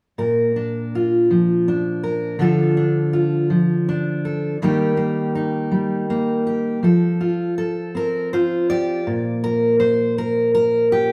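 From 0.2 s a bright, full-bodied dreadnought steel-string guitar, fingerpicked and up front, plays a pastoral solo folk passage in a straight 6/8, moving through Bb, Dm, Eb and F before settling on a Bb5 at 9.0 s, all set in a moderate stone-room reverb in this short live cut from a longer piece.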